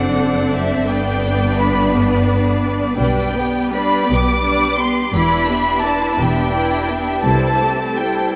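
Opening at once with bowed chamber violins singing a rich, vibrato-laden melody up front over a smooth second violin line, a clear, focused viola accompaniment, softly attacked cello with expressive portamento in the background and a lush, smooth-topped double bass section, this lyrical fragment of a slow romantic string orchestra movement sways in G major at 57 BPM in 6/8 with free, rubato pacing, all bathed in a huge, wet reverb that places the ensemble in a vast, echoing space.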